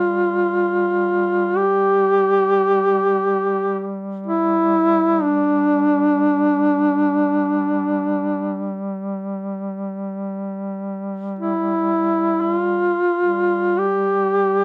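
A solemn, mournful Caucasian folk lament opens with two duduks sounding together from the start of this fragment of a longer piece, one holding a low G3 drone with vibrato and a smooth top beneath a mellow, up-front melody duduk that moves between D4 and G4 with soft attacks, scooped notes, vibrato and a slapback echo, all captured in a dry, close 1970s-style studio sound with light reverb through to 14.6 seconds.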